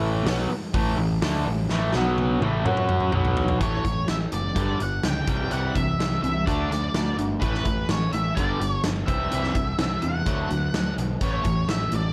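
A bright, double-tracked overdriven garage guitar sits up front and carries the riff in this sunny, driving classic rock excerpt at 126 BPM in a straight 4/4. Beneath it, a fuzzed, picked electric bass with a direct-and-amped growl holds the low end, while a big, roomy acoustic drum kit with a punchy kick, a medium-tuned snare and a rolled-off top plays hi-hat, kick, snare and toms from 0.3 seconds. A drum fill from 1.7 seconds leads into the second section, where the opening A5, B5 and F#5 chords give way to a sequence moving through A, G5, C and D. At 3.6 seconds a dark, distorted octave-fuzz lead guitar with wah enters with a picked melody. The sound is dry, with little reverb, and the passage is cut from a longer piece.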